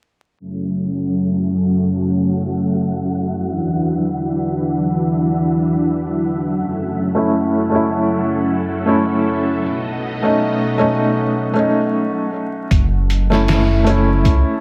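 A vintage string machine cello patch opens this dark, cinematic trip hop excerpt with full-bodied, chorused sustained chords through F#m7, Dadd9/E and B7, under a filter sweep, while an airy, wind-like noise texture breathes in the background. A soft, felt-muted upright piano with audible action noise, tremolo and tape echo joins at 7.1 seconds, and the strings stop at 11.9 seconds for a brief break. At 12.7 seconds a deep, rumbling detuned sawtooth bass and a muffled, compressed sampler-style drum kit with a thumpy kick arrive, the mix soaked throughout in lush hall reverb and vinyl crackle.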